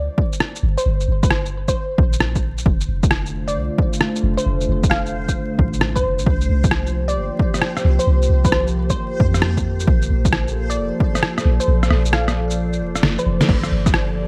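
A dry, bright digital sheen with vinyl crackle frames this short future garage piece, cut from a longer track, with a nocturnal, wistful mood and a swung sixteenth-note feel. Up front, a punchy, overdriven electronic kick pairs with a muffled, pitched-down sampler-style kit whose fat snare, rim click, shaker and crash sound compressed and re-recorded in a large room. A deep, round 808-style bass pumps against the beat, while a glassy, crystalline wavetable pluck carries the melody with chorus and delay. In the background, a reversed, granular texture swells with a dreamy, detuned glow. At 3.0 seconds a warbling, nostalgic tape-like pad enters with mellow, sustained chords, lo-fi 12-bit grit, chorus, reverb and sidechain pumping. The kick drops out at 11.7 seconds, and a drum fill arrives at 13.0 seconds.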